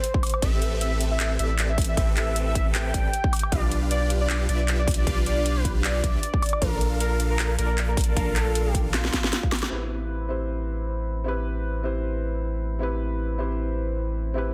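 Bittersweet and dreamy, this future bass drop moves at 155 BPM in A minor with a half-time, lightly swung feel, as a velvety synth lead carries the melody over huge, detuned supersaw chords, both breathing with sidechain pumping, the lead dressed in chorus and dub echo and the chords in a phaser. A punchy, layered electronic kick and a trap kit of sharp snare, metallic hats, handclaps and woodblock sit up front beside a deep, thick saturated sub bass, with a drum fill from 8.9 s leading to a band accent at 9.6 s. At 9.7 s everything falls away but the sub bass and a soft, intimate felt-muted upright piano touched with tape echo, returning to the Am9 chord in this dense, heavily limited fragment of a longer piece.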